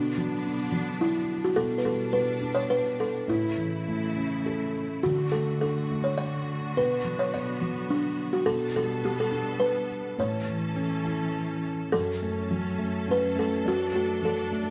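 A sleepy, tender children's lullaby in D major at 105 BPM in a straight 3/4, this excerpt features an up-front buzzing kalimba carrying a woody, hollow-box melody over an intimate felt-muted upright piano, with audible action noise and a brief fill at 4.2 seconds, while a lush, bowed string section holds sustained chords with vibrato beneath, all in light reverb, moving through Bm, G/B and A before shifting toward F#m at 11.9 seconds.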